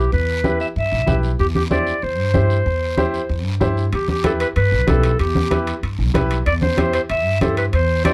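Passionate and driving, this short cut from a longer cumbia piece moves at a brisk straight pulse in a Latin groove. A soft-attacked, vintage-toned clarinet carries the melody up front in a classical solo style, over a bright, polished upright piano that fills in the accompaniment with a brilliant, present edge. Beneath them, a woody, thumpy upright bass with gut strings plays pizzicato in the low register, sitting close and prominent in the mix. A raspy, dry guiro joins almost immediately, and low-tuned congas struck with hard hands ring out from 0.4 seconds, before metal-shelled timbales enter at 3.9 seconds as the passage repeats. The harmony rocks between E minor and C over E, and light reverb gives the whole a dark, warm production.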